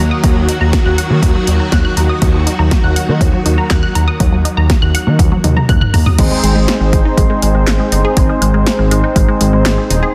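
Shimmering string-machine chords, a squelchy, detuned blip pluck running arpeggios through chorus, phaser and digital delay, and a smooth gliding synth bass open this wistful, nostalgic synth-pop excerpt over an Ebm chord, with a punchy, overdriven analog drum machine of kick, snare, hi-hat, handclaps, toms and crash sitting up front. A drum fill runs from 5.2 seconds, and the strings stop at 6.1 seconds. At 6.2 seconds the harmony moves to Ab and a mellow, brassy synth brass part enters with chorus and vibrato, all set in a moderate scoring-stage reverb within a dense, heavily limited modern master.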